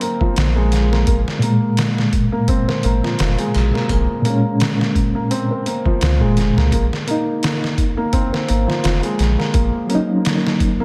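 A lightly swung 85 BPM trip hop groove in 4/4 comes from a gritty, pitched-down sampler-style drum kit with a thumpy kick and compressed snare and hi-hat, while a soft, felt-muted upright piano plays intimate arpeggios through a low-pass filter and tape echo. A round sine sub bass enters at 0.4 s, and a reedy, worn, slightly out-of-tune electric piano joins at 1.4 s with fast tremolo and tape echo. The dark, hypnotic excerpt in Bb minor sits in a dreamy hall reverb, moving from Bbm7 to Ebm7 at 6.7 s.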